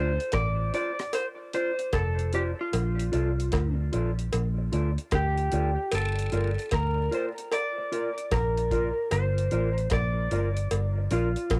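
Roots reggae at 75 BPM in G minor, serious and hypnotic, with a slightly broken-up, picked lead guitar melody and a clean, fingered mellow electric guitar both trailing dub echo over a round, foam-muted fingered bass sitting up front, while a dry, tight-kicked drum kit treated with cassette tape enters at 0.2 s on hi-hat, kick and rim click, joined by cowbell and jawbone-type rattle from a small room, as the chords move from Dm7 through Bbmaj7 to Gm7 in this short home-cassette excerpt with light reverb.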